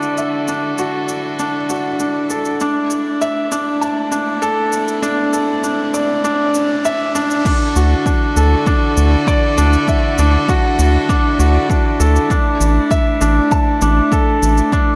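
Luminous and tender, this piano and strings electronica piece moves at 99 BPM in D major, with a soft, felt-muted upright piano playing an intimate riff up front through digital delay, its action noise audible, over sustained chords from a bright, focused string quartet that pump with the sidechain behind a low-pass filter. A round, deep analog bass with a plucky filtered attack also pumps beneath, while an overdriven electronic shaker and crash cymbal tick along and a very quiet riser climbs from 1.3 seconds through the build-up. At 7.5 seconds the drop arrives with a punchy, overdriven electronic kick drum, and a lush hall reverb surrounds the whole excerpt, which is cut from a longer piece.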